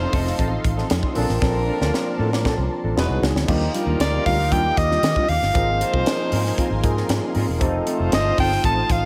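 A forceful, bright soprano saxophone with delay enters at 4.0 seconds over this glossy, urban 1980s jazz-funk pop excerpt at 116 BPM, where a punchy horn section, a barky tine electric piano with lush chorus, a thick detuned synth pad with phaser, a dark, mellow guitar riff, a round, foam-muted fingered bass and a crisp fusion drum kit with gated reverb and a high-tuned snare, which plays a fill from 1.4 to 3.5 seconds, move through jazzy chords such as Bbmaj9, Emaj9 and Ab69.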